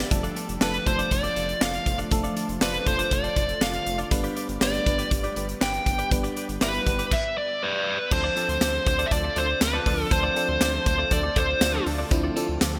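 A glassy FM electric piano with chorus and phaser, a shimmering ambient pad, a clean direct-recorded electric guitar riff with digital delay and a round analog bass together open this nostalgic, moody 1980s-style pop piece in D dorian at 120 BPM, as a punchy modern drum kit with gated reverb and a very quiet jingly tambourine drive the straight 4/4 groove beneath a dark, overdriven lead guitar melody up front, while a funky polysynth comp adds detuned sawtooth stabs in the background from 9.1 s, the whole set within a bright digital production and lush hall reverb.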